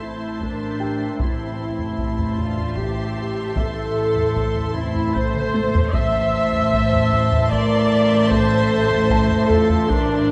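In a steady 3/4 at 76 BPM, this ominous, mysterious suspense cue in A phrygian rests on an A minor chord, with an intimate violin section carrying the high melody above sul tasto violas, cellos and double basses. A clear clarinet and a dark, woody, distant second violin section trace secondary lines, while a mellow French horn section and a bubbling, detuned sawtooth texture with chorus and random filter steps hold sustained chords, and a smooth, vintage grand piano adds texture in the background. Close, hard-stick taiko drums enter at 0.4 s and play a fill at 5.3 s, all set in a moderate scoring-stage reverb with a warm production.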